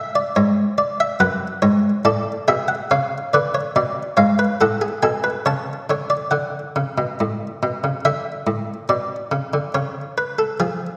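This classical, baroque-style three-part fugue for solo harpsichord has a joyful, lively character, moving at 71 BPM in a straight 4/4 and tuned to A4 = 439 Hz. A buff-stop harpsichord carries all three voices from 0.0 to 10.9 seconds, spanning F#2 to A5 with a muted, lute-like pluck in the Flemish style that sits mid-forward and up front. Its tone is dry and close, while a scoring-stage reverb with a 1.8-second decay surrounds it in a generous, wet space. The harmony opens on a rootless F#m, passes through G#m7b5/F#, C#7 and F#m/A, then shifts at 6.3 seconds into a new section built on D, Aadd11 and C#. The passage is cut from a longer piece.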